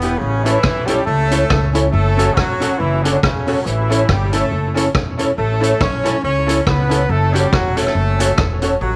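Mischievous and energetic, this ska excerpt swings along as a clear, loosely played horn section carries the melody in octave doubling with light vibrato, backed by a pizzicato upright bass with a woody tone and a street-band drum kit with a boomy kick, hi-hat and rim click sitting up front. A dark, clean archtop guitar, miked and amplified, plays picked accompaniment through tape echo, while a bright, slightly detuned upright piano adds very quiet stabs with audible action noise. The chords move between A and F#m, and a moderate echo chamber reverb surrounds the band, with the guitar, piano and drums stopping at 8.7 seconds as the horns and bass ring on to 9.0.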